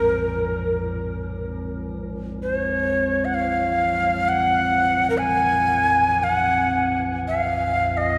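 Meditative and spacious, this short excerpt of world meditation music floats in free time in Bb minor, set in a vast, echoing cathedral-like space with a long 5.4-second reverb tail. A breathy, bright cedar flute in the Native American style carries the melody up front from the start, its woody tone marked by vibrato and a tongued chiff, and haloed by shimmer reverb and diffuse ambient delay. Beneath it, from 0.0 to 8.2 seconds, a low, metallic and inharmonic drone sustains with a slow attack and long release, its eerie, warbling, mellow vintage FM colour treated with chorus, built-in reverb and phaser.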